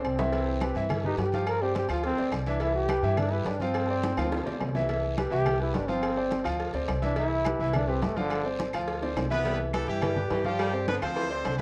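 Heard through worn, warbling cassette tape with moderate studio reverb, this festive, danceable salsa excerpt features a punchy, vibrato-laden trombone solo up front over brilliant grand piano, a thumpy, gut-strung upright bass, ringing agogo bells and timbales, soft-handed congas, distant, round cowbell and bongos, very quiet claves and a raspy guiro, until a bright horn section takes the melody at 9.3 seconds, joined at 9.4 seconds by a smooth baritone saxophone on a second line.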